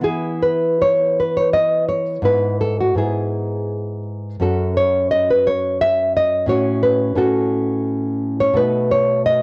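A full-bodied nylon-string guitar, fingerpicked up front, opens this sunny, warm romantic piece for solo classical guitar in E major, moving in a rubato 3/4 at around 86 BPM through E5, E/G#, F#5, F#m/A and B7 harmonies, with the instrument's deep classical tone carrying the character of cassette tape and a moderate spring reverb in a home recording cut from a longer piece.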